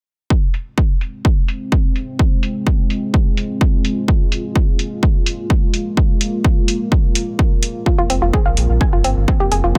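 Melancholic and driving, this short melodic techno passage moves in a straight 4/4 feel. A heavy, overdriven electronic kick sits up front from 0.3 seconds, joined by an analog-toned hi-hat softened by a low-pass filter. A deep, moody pad built from detuned sawtooth unison with a sub octave swells in slowly with sustained chords, its chorus and built-in reverb giving it a dark haze while sidechain pumping makes it breathe against the kick. The harmony rests on F minor before shifting to Bb sus2 over F near 7.9 seconds, where a woody, nasal wave-folded pluck enters with short, percussive arpeggios carried by chorus and dub echo. Almost at once a round analog bass arrives at 8.0 seconds, mixing sawtooth and sine with ring modulation for an evolving low end that also pumps with the sidechain. The overall sound is close and dry, with little room ambience.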